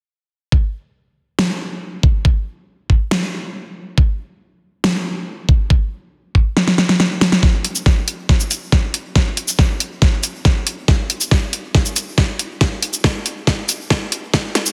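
Dubstep in a half-time 4/4 feel at 139 BPM, this heavy, menacing passage is cut from a longer piece and built entirely from layered electronic drums. An up-front, knocking electronic kick drum opens at 0.5 seconds, and a dubstep drum kit joins at 1.4 seconds with a huge snare, bright hi-hats and a shaker, each of its parts thinned by a high-pass filter. Both drum parts carry a tape-warm, produced character and sit close to the listener under light reverb. A drum fill marks the turn at 6.6 seconds into the second section, where a build-up unfolds with a filter sweep and further fills through to the end. The master is dense and heavily limited, with a modern high-pass filtered sheen.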